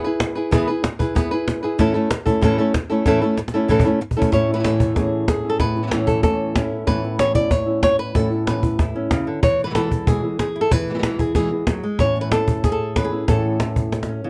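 Proud and fiery, this flamenco excerpt drives along at 188 BPM in a straight 4/4, centred on A major. A fingerpicked flamenco guitar carries the melody from the first moment, its close, up-front sound catching finger squeaks against the strings. A cajon joins almost at once with a woody, acoustic tone, faint snares and a small-room character, and it plays a fill just before 4.3 seconds and again at the very end. At 4.3 seconds a second flamenco guitar enters with thumb-plucked stabs lower in the mix, its tone warm and showing finger squeaks of its own. The harmony moves from E to A, then settles on Aadd9 with a brief turn to E. Recorded dry and in close detail, the performance feels intimate and immediate.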